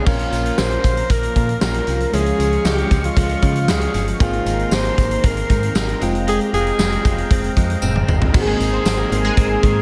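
A straight 4/4 groove at 116 BPM drives this nostalgic, uplifting 1980s-style pop excerpt, where a huge arena drum kit with a fat, gated-reverb snare, punchy kick and bright cymbals sits up front beside a round, dark FM bass, while a breathy, intimate alto saxophone carries the melody with delay over mellow electric-piano-like synth keys, a clean direct-recorded electric guitar riff in lush chorus, a thick, warbling unison pad, a jingly tambourine, and a funky detuned polysynth comp that stabs in at 8.5 seconds just after a drum fill, as the chords move from Bbm through Db, Abadd9 and Fmadd9 back to Abadd9.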